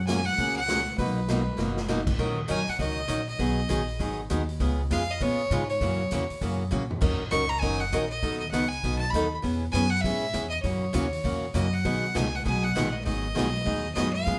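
A clear, biting fiddle with light vibrato and an airy bow leads this playful, swinging western swing clip in B major at 199 BPM, backed by a bright, boxy picked archtop guitar, a woody, thumpy upright bass on gut strings and a punchy big-room drum kit that drops in fills at 1.6 and 6.7 seconds, all heard as a band playing live together in one room with moderate reverb.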